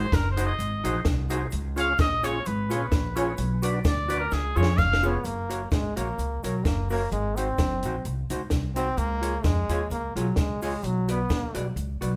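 A lightly swung 129 BPM ska groove in F# major drives this cheerful, upbeat cut from a longer piece, with a compact cocktail kit (a punchy kick and high-tuned snare) and a woody pizzicato upright bass sitting up front, a dark, clean hollow-body jazz guitar comping and a very quiet, grainy cabasa. A clear, scooped trumpet carries the melody as a solo through the opening, over lightly overdriven tonewheel organ stabs with chorus vibrato and a slow rotary speaker, before a drum fill at 4.3 seconds. From 5.0 seconds a bright, smooth-topped trombone takes over the tune, while the moderate room reverb gives the feel of a band playing live together.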